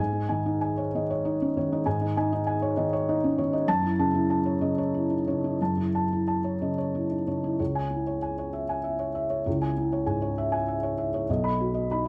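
Set in a light reverb, this reflective, wistful neoclassical minimalist piece features a solo felt-muted upright piano, dark and intimate with a thick-felt softness placed up front, drifting rubato in a lilting 6/8 through G#sus4 and F#m7 before settling onto C#m at 7.6 seconds and turning to B just before it is cut off.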